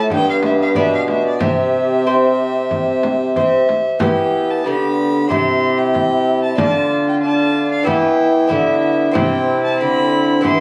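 A violin leads this solemn, rustic consort dance in Renaissance style, carrying the melody up front with a gut-string tone and light vibrato. Beneath it, a nasal viola traces a second line, a fingerpicked lute with double strings adds bright, delicate accompaniment, and a bassoon with vibrato sits in the background, while a brilliant, vintage-sounding trombone holds the bass. A deep frame drum joins at 0.1 seconds, marking a straight four-beat metre. The harmony moves from G to C before a new section at 4.0 seconds turns to E minor, C and D minor chords. A moderate stone-room reverb surrounds the consort, and the compressed sound, caught on a phone amid club ambience, comes from a clip cut out of a longer piece.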